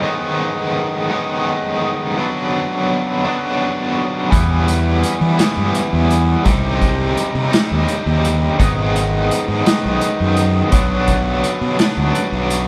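Captured as a band playing live in one room with moderate studio reverb, this dark, mysterious psychedelic rock excerpt moves in a slow 6/8 at 56 BPM, counted in dotted quarters. A biting, bright overdriven guitar, double-tracked and up front with tremolo, plays the riff alone over G#m and Bm. At 4.3 s, as the chords move on to Em and Cm before returning to G#m and Bm, a round, fuzzy fingered electric bass and an acoustic vintage drum kit enter together, the kit with a punchy kick, medium-tuned snare, hi-hat, rolled-off top and a pumping small-room sound.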